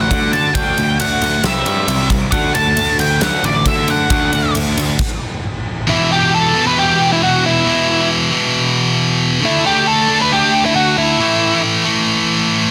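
A bright, up-front high-gain guitar riff crashes in at 5.9 s after a brief stop in this angsty, brooding quiet-loud alternative rock fragment, while a dark octave-fuzz lead guitar carries the melody from the start over a half-time opening of slightly broken-up arpeggios from a guitar through a small old amp, a background overdriven guitar riff, a growly fuzz picked bass and a huge arena drum kit with a fat snare and punchy kick in a pumping hall, these four supporting parts falling away around 5.0 s.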